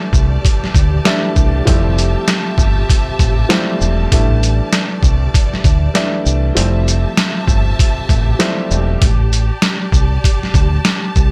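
Dry and tape-worn, this nostalgic boom-bap hip-hop excerpt moves at 98 BPM with a swung sixteenth feel, as a compressed, pitched-down trip hop sampler-style drum kit of thumpy kick, medium-tuned snare, hi-hat and shaker sits up front beside a dark, round dub fingered electric bass, while a woody vintage upright piano with a cassette-tape tint plays accompaniment until 9.0 s and a lush bowed string section with vibrato and portamento holds sustained chords over a cycle of A7sus4 and Fmaj9, the kick dropping out briefly at 6.6 s.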